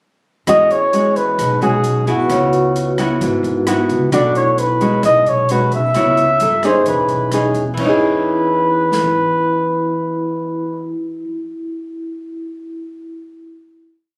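Opening at 0.5 s, a breathy, up-front flugelhorn sings a motif-based melody with scooped notes over fingerpicked nylon-string guitar playing thumb bass and syncopated plucked chords, a growly pizzicato upright bass on dotted root and fifth, and an airy jazz kit with dark cymbals in a soft bossa groove, while a ringing vibraphone with slow motor vibrato scatters notes and rings on alone after 11.4 s until 14.0 s, closing this romantic, sophisticated 131 BPM bossa nova in E major on an E6 chord, heard through club reverb as if caught on a phone in the room.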